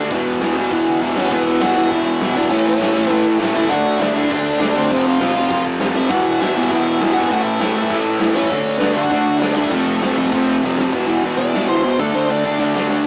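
A bright, compressed distorted electric guitar riff drives this upbeat, rebellious punk rock excerpt at 200 BPM. It is backed by a warm, sludgy overdriven guitar, a growly, punchy overdriven bass set back in the mix, and a big rock drum kit with a punchy kick in a stone room that adds several fills. A dark, bluesy lead guitar carries the melody from 1.2 seconds and takes a solo over a half-time feel from 10.9 seconds, captured in a rough rehearsal-room recording with light reverb, saturation and a small speaker sound.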